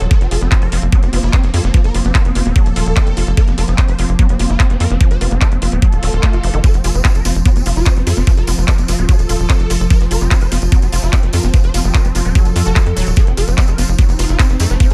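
A knocking, layered electronic kick sits up front beside a tight, punchy sequencer bass of sawtooth and square tones with a fast filter pluck, driving this hypnotic psychedelic trance excerpt at 147 BPM in F major. Above them a swarming, aggressive rave lead with a pitch-rise attack, detuned unison and 12-bit sampler grit pumps against the kick through chorus, phaser and digital delay, while a morphing, warbling wavetable pad holds sustained chords and a lush detuned pluck riff plays in the background. A techno kit of handclaps and metallic hats re-recorded in a small room keeps time, a barely audible nasal wobble bass drifts in and out, and after a brief electronic swell at 6.0 seconds a jingly, band-limited tambourine joins at 6.6 seconds.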